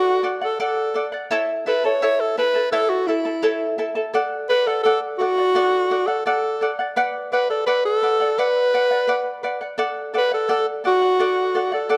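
An alto saxophone and a charango begin together in this short cut from a longer Andean folk piece, setting a mood that is both festive and wistful at a relaxed 85 BPM in 2/4 with a straight feel. The saxophone carries the melody up front in a classical style, its warm, close-miked tone shaded with vibrato as it moves between E4 and C#5. Beneath it, the fingerpicked charango supplies accompaniment with a shimmering, acoustic sound from its double strings, some of them octave-doubled, sitting slightly lower in level but still forward. The harmony moves through D, A and Bm before settling back on D at 9.8 seconds, where the opening phrase begins again. Close, detailed microphones and a light reverb keep both instruments intimate and clear through to the end at 12.0 seconds.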